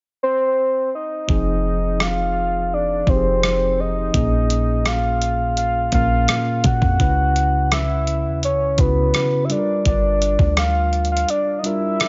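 Longing and moody, this contemporary R&B excerpt at 84 BPM opens with a soft, round octave-layered synth lead carrying the melody through chorus and tape echo, joined at 1.3 seconds by a mellow tine electric piano, a deep, boomy 808-style bass and a gated 80s drum machine whose thumpy, overdriven kick, hi-hat and rim click sit up front, moving through Fm7, Bbm7, Dbm7 and Gm7 under light reverb before the kick drops out at 11.3 seconds.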